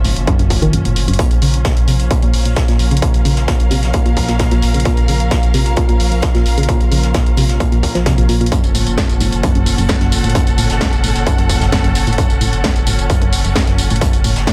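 Driving, relentless peak-time techno at 131 BPM in Bb harmonic minor, moving between Gbm and Bbm, where a dark, woody wave-folded pluck riff with a warbling chorus and a deep saturated sub bass pump beneath a distorted electronic kick that enters at 0.3 s and drops out from 0.7 to 1.2 s, while a cracking-snare techno kit, a very quiet distant brush kit joining at 1.2 s, an eerie metallic FM drone and a clear, lush symphonic string section fading in from the start build an industrial, roomy haze.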